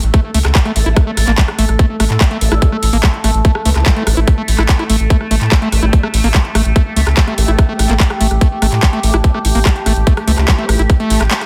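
Dense and heavily limited, this modern-sounding psychedelic trance excerpt sits in a digital ambience, driving a straight 4/4 at 145 BPM with a hypnotic pull over an A5 chord, tuned to A4 = 439 Hz. An up-front electronic kick lands tight and layered, while a garage drum kit adds handclaps, a rim click and metallic hi-hats, both parts carrying a small room ambience. Beneath them, a round analog bass holds deep and dark from the opening moment. A screaming acid riff cuts through, squelchy and aggressive, its resonant filter sweep soaked in distortion, chorus, delay and sidechain pumping. Further back, a slow-attack drone of moving overtones sustains chords with a wave-folded, notch-shifting texture, chorus and built-in reverb, pumping along with the beat. Entering at 0.8 seconds, a quiet formant-sweep wobble bass adds a detuned, cassette-tinged second line, high-pass filtered and delayed, until 10.8 seconds.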